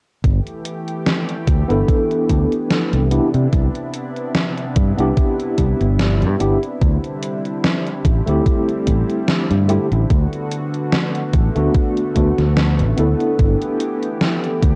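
A thumpy, overdriven electronic kick sits up front in this woozy, faded vaporwave excerpt at 73 BPM in G major, joined by a gated 80s digital drum machine whose hi-hat and gated-reverb snare carry 12-bit sampler grit and a tape-softened edge over a light 16th-note swing. A fingered electric bass with tube saturation anchors the low end beneath a lush, thick unison pad of detuned sawtooth and square waves, its slow-attack chords chorused and bright as the harmony moves from G69 through Cmaj9, D9sus4 and Bm7 and back. From 1.7 seconds a worn, slightly out-of-tune tine electric piano adds mellow, clean tones through a combo amp with medium tremolo, lush chorus and analog delay, all set in a dry, gritty cassette-tape sound.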